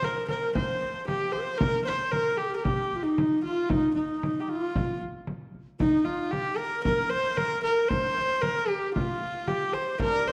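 In a straight 4/4 at 114 BPM, this short Mongolian folk excerpt feels vast and windswept, with a husky, earthy horsehead fiddle carrying the melody up front, adorned by light vibrato and portamento, while a reedy bamboo low xiao traces a second line in the background, a deep frame drum played with soft hands sits close, and a delicate fingerpicked lute adds arpeggios from 0.0 to 1.6 seconds and again at 10.0 seconds, all bathed in a wet recital-hall reverb within a dark, warm production.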